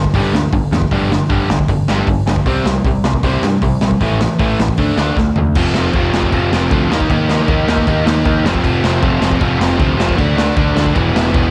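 A rebellious, rowdy punk rock excerpt at 155 BPM kicks off with all four parts together: a biting overdriven guitar riffing up front with cassette tape grit, a brighter distorted guitar riff tucked in the background, a growling picked bass with overdrive, and a raw garage drum kit whose saturated, rolled-off sound carries dark cymbals, a punchy kick and a medium-tuned snare in a small, pumping room. The opening section drives through G5, C5, A5 and D5 until a drum fill at 5.2 s tips it into a second section from 5.6 s that moves through F, Eb, back to F, then D and E. The whole thing has the rough character of a home recording on cassette, dressed in studio reverb.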